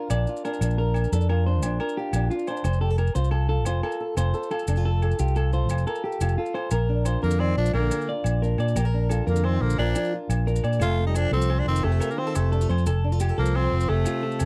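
A dry, close 1970s-style studio sound frames this danceable highlife guitar band excerpt in 12/8, where a woody, boxy fingerpicked acoustic guitar on old strings and a twangy, bright clean electric guitar playing arpeggios with slapback echo sit over a round, dark fingered electric bass up front, ringing agogo bells and grainy maracas, until at 7.2 s a raspy, gritty tenor saxophone takes the melody with scooped notes and light vibrato while a breathy, whispered trombone adds a mellow second line.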